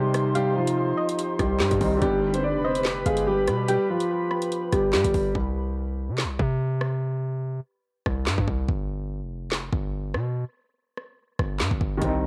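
A half-time drill groove at 144 BPM, built from an electronic kit with a knocking kick, woody snare, metallic hats, handclaps and rim clicks, drives this ominous, dark hip hop excerpt in C harmonic minor, where a boxy, mellow concert grand carries the melody over a felt-muted upright piano in the background, a warbling, nostalgic tape-like pad with chorus, a detuned soft round pluck with tape echo and a saturated, punchy 808 bass, until around 5.4 s the keys, pad and pluck fall away into a break of bass and drums, with the muted upright returning briefly at 12.0 s, all captured as a lo-fi cassette home recording with light reverb.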